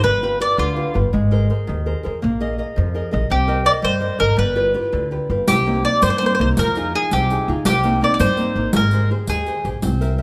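A wistful, passionate Italian folk serenade in a rubato 6/8 opens with a brief phrase from a woody, double-strung picked mandolin alongside bright, fingerpicked nylon-string guitar and a thumpy pizzicato upright bass, all close and up front. The mandolin falls away at 1.0 seconds and returns with the melody at 3.3, moving over minor-key harmony, while a riq with soft hands and jingling brightness joins at 5.5 seconds. A moderate recital-hall reverb surrounds the ensemble, and this fragment is drawn from a longer piece.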